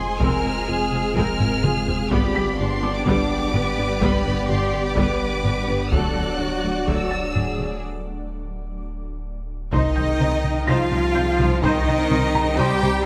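Hard-stick taiko drums drive this tense, futuristic cut from a hybrid orchestral and electronic film score, with a fill at 1.4 seconds and a break at 7.8 seconds before a huge, bright but very quiet impact lands at 9.7 seconds. Lush bowed strings carry the harmony: an expressive symphonic violin section sings the high melody over a distant studio violin second line, a background viola section with portamento, a focused cello section and a woody double bass section. They are joined by deep, round sub bass, mellow, roomy French horns holding chords, a cloudy granular pad with its own reverb, dark, soft chorused pluck arpeggios, and a muted, intimate upright piano with audible action noise and delay, all captured with close, detailed microphones and light reverb.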